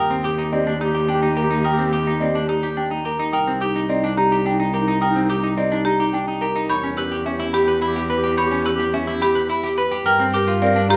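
A straight three-beat pulse drives this propulsive, hypnotic passage of minimalist classical pattern music, cut from a longer piece and running about 11 seconds. A marimba struck with hard mallets carries the melody on woody, percussive rosewood bars, its tone vintage and band-limited. A delicate, bell-like celesta and a bright, clean, picked semi-hollow electric guitar weave arpeggios around it, while a clarinet adds a clear, smooth-topped second line set in the background. Underneath, a single warm cello holds the bass up front, bowed sul tasto with an airy, soft attack and light vibrato that feels close and intimate. The harmony moves from Ebmaj7 through Cm7 and Em before reaching Gm7 at 10.1 s, and a wet, large studio reverb surrounds the ensemble.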